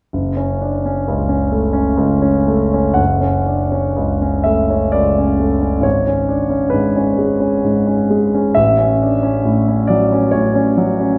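A solo concert grand piano opens at 0.1 seconds on an F# minor chord, setting a wistful, mournful tone for this romantic classical nocturne. The tempo hovers between 56 and 69 BPM in a slow 3/4 with a flexible, rubato feel, and the instrument is tuned slightly low at A4 = 439 Hz. The piano sounds warm and natural, placed up front, with a deep bass that reaches down to F#1 while its upper register extends as high as F#5. A new passage begins around 3.0 seconds, and the harmony moves through a C#5 chord over G# before settling on F# minor over A near 8.5 seconds. The playing is surrounded by a wet church reverb with a long 3.5-second decay, giving the sense of a large church or concert hall. This short piece, cut from a longer work, ends at 11.2 seconds.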